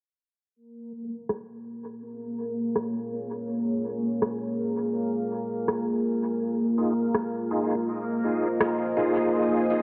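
Ambient dub at 82 BPM with a hazy, deep mood, cut from a longer piece, where a bubbling, resonant stepped-filter texture opens at 0.7 seconds, an electronic rim click with dub echo follows, a dark, warbling detuned pad with 12-bit sampler grit fades in over Bbm7 and Fm7, and a reedy tonewheel organ with key click and slow rotary speaker adds stabs from 6.8 seconds, all through a cassette-tape haze and a filter sweep.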